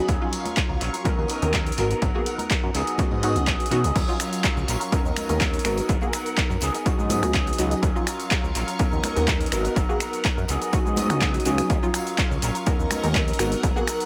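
This filtered disco house excerpt, cut from a longer piece, has a nostalgic, groovy mood over a straight 4/4 pulse. An up-front, punchy electronic kick with overdrive anchors the groove, joined by an overdriven analog drum machine playing cabasa, crash cymbal, finger snaps, handclaps and hi-hat, with its hats, cymbals and percussion pumping and trailing dub echo, while very quiet, close and dry tambourine and congas ring beneath. A fat, thick sawtooth bass with tube saturation pumps under the kick, and a dark, detuned polysynth comps funky chords through chorus and phaser. An electric guitar with a twangy envelope filter plays a clean, picked riff soaked in dub echo, and a swirling vintage string machine holds slow-attack chords in the background through ensemble chorus and phaser. The opening 4.0 seconds ride a filter sweep before the drop at 4.0 seconds opens into the full groove, cycling through Ebm9, Bmaj9/D#, Abm9 and Db9sus4 inside an echo-heavy digital ambience.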